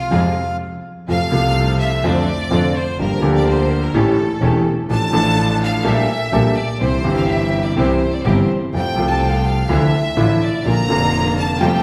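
Heard through a wet, church-like hall reverb, this dramatic, passionate tango fragment in F major moves at 125 BPM in 4/4 with a rubato feel. A reedy, dark, close-miked bandoneon opens alongside the violin section with a brief phrase that ends at 0.6 seconds, followed by a short stop. From 1.1 seconds the bright, intense chamber violin section takes the solo with biting vibrato, over an up-front concert grand piano with clear, deep bass, lush bowed string stabs in the background, and a nasal, boxy bowed double bass.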